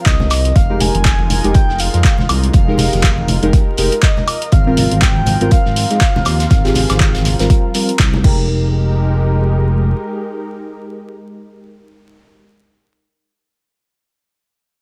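Smooth and hypnotic, this deep house excerpt in F minor moves at 121 BPM with a swung 16th feel, a dry sound and a layer of vinyl crackle, cut from a longer piece. A breathy, flute-like synth lead with lush chorus and digital delay carries the melody until 8.0 seconds over a warbling vintage analog pad and an up-front, dark synth bass, both pumping with sidechain. An overdriven deep kick, a tape-warm analog drum machine with crash, handclaps, hi-hat and woodblock, a very quiet soul kit, and background congas drive the groove until about 8.4 seconds, while a soft, mellow chord stab with phaser, delay and a moving notch filter sweep carries on to the end at 12.5 seconds.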